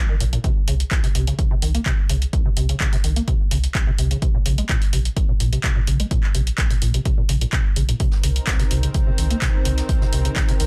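A dense, heavily limited modern master with light reverb carries this gritty, hypnotic acid house passage at 127 BPM in C phrygian, cut from a longer piece, where a squelchy, resonant square-wave acid bass riff with overdrive, subtle chorus and cassette-tape grit runs under a filter sweep from the first second, a deep, round sine sub bass with tube saturation and a punchy, up-front electronic kick drive the groove, a tape-warmed analog drum machine adds handclaps and hi-hat, and from 8.0 s a lush, detuned sawtooth unison pad with chorus sustains a Cm7 while a very quiet, distant jazz kit played with brushes touches in hi-hat and snare, with the acid bass, sub bass and pad each pumping to the sidechain.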